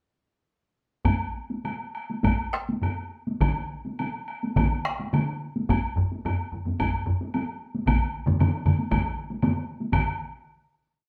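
Ceremonial and driving, this short, complete Japanese traditional piece for taiko drum ensemble has several groups of taiko struck with heavy and hard sticks, some up front in a live room and others close and dry, playing repeating patterns and taiko phrases over a distant, woody woodblock, with another taiko group joining at 3.4 seconds as the whole ensemble speeds up in a wet studio ambience toward a final hit at 9.9 seconds.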